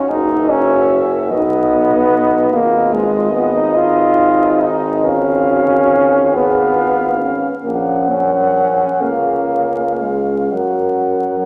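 This classical, hymn-like fragment for brass band moves slowly and tenderly in 6/8, its rubato pulse drifting between 39 and 50 BPM in dotted quarters, in F# major. An up-front trombone with a warm vibrato sounds first at 0.0 seconds. A moment later, a distant, roomy flugelhorn carries the melody with warm vibrato, while a mellow French horn section with soft attacks and light vibrato shapes a second line in the background. A clear, punchy tuba with a vintage edge anchors the bass, and a very quiet, distant euphonium adds light-vibrato accompaniment. The harmony passes from F#7 through B, G#m, C#7/G# and F#/A# before settling via C# onto F# at 10.5 seconds. A wet concert-hall reverb surrounds the ensemble, and a layer of vinyl crackle gives the sound an aged, nostalgic patina.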